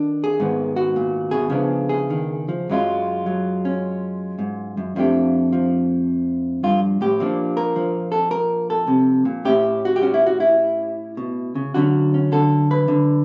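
Solo jazz at 106 BPM in 4/4, sophisticated and playful, in which a dark, clean vintage hollow-body electric guitar, picked and placed up front, moves with a swung yet rubato feel through chords such as Abm9, Db7b9 and F69 before arriving on Dmaj7 at 11.7 seconds, all bathed in wet studio reverb that gives the sense of hearing it from further back in the room, in this brief cut from a longer piece.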